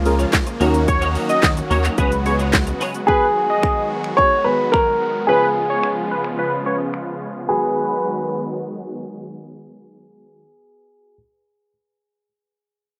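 A warm concert grand piano stands out most, entering up front at 3.1 seconds with an intimate, polished tone, audible action noise and long sustain as it carries the melody through to the end of this confident, driving dance-pop cut from a longer piece, set in G# dorian at 109 BPM in a straight 4/4. Before it, the opening drop pairs a huge, lush supersaw chord bed with a glossy, nasal chorused synth bass and a bright, twangy twelve-string electric guitar riff, all three of these parts pumping with the sidechain except the guitar, which shimmers with ensemble chorus. A punchy, overdriven pop drum kit of kick, deep snare, hi-hat, shaker, finger snaps and handclaps drives the groove up front, while a very quiet, crisp group handclap adds a human touch early on. A bold, retro octave-doubled sawtooth lead with vibrato, chorus and delay sings above, and a soft, deep chord stab with a moving notch lingers in the background. 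The harmony moves from A#m7/C# through D#m7 and C#7sus4 into G#m7 and C#7 as a filter sweep builds the middle section, all in a rough home demo mix with light reverb and a low-pass filter.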